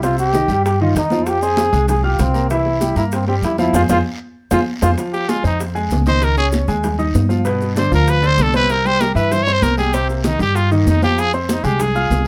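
Salsa in F minor at 194 BPM, danceable and passionate, where a bright, punchy trombone leads through a band accent from 3.7 seconds, then a growling, gritty trumpet takes a solo from 5.1 seconds over clear grand piano with audible action noise, a woody, thumpy pizzicato upright bass up front, and background congas, tight bongos, raspy guiro and grainy maracas, all in light reverb with close, detailed microphones.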